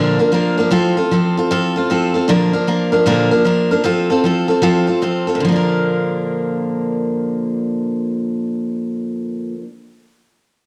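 A picked steel-string acoustic guitar carries this short rock piece entirely by itself, its fresh strings giving a bright, full-bodied dreadnought tone that sits up front in the mix. The mood is retro and rollicking, driven by a brisk 153 BPM in 4/4 with a swung eighth-note feel. Set in Bb major, the guitar ranges from Bb2 up to Bb4, moving between Bb and F chords through three short sections over roughly 9.7 seconds. An echo chamber reverb with a 1.4-second tail, blended with small room ambience, adds a vintage sheen around the guitar. Cut from a longer performance, this brief passage feels lively and spirited.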